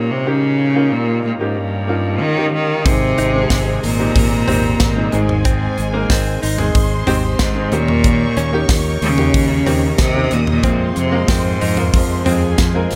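A bright, focused bowed cello carries the melody from the start, over clear, woody, slightly detuned upright piano and a very quiet tonewheel organ holding smooth sustained chords, in this driving, bittersweet piano-driven pop at 92 BPM in 4/4. At 2.9 seconds a polished studio drum kit with a punchy kick, a fingered electric bass and a lush violin section with a soft attack and portamento in the background join, and a clean, compressed picked electric guitar riff enters at 3.2 seconds. The chords move from Eb7 to Ab, back to Eb7 and on to Fm, set in light reverb.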